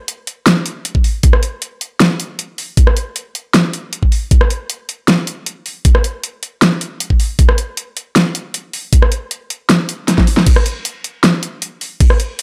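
A half-time groove in 4/4 drives this short future bass cut, drawn from a longer piece and carrying a bright, euphoric mood. A layered, produced pop drum kit plays throughout, with a crash cymbal, warm hi-hats, a rim click and a fat snare, all given an overdriven edge and a re-recorded small-room character. An electronic kick drum joins at 0.9 seconds, its knocking punch sitting up front alongside the kit. A drum fill around 10.1 seconds briefly breaks the pattern before the groove carries on. The mix is dry and close, keeping both drum parts immediate and forward.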